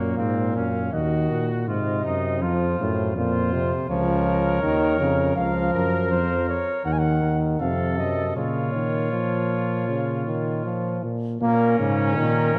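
A brass quartet opens together in a contemplative yet driving classical canzona at 80 BPM in 4/4, with the mellow cornet carrying the melody over a second line from a distant, roomy trumpet with light vibrato. Close-miked and up front, a warm trombone supplies the accompaniment while the bass trombone anchors the low end, the harmony settling into Bb minor from 5.4 s. Cut from a longer piece, this 12.6-second fragment sits in a dark production bathed in a wet scoring-stage reverb.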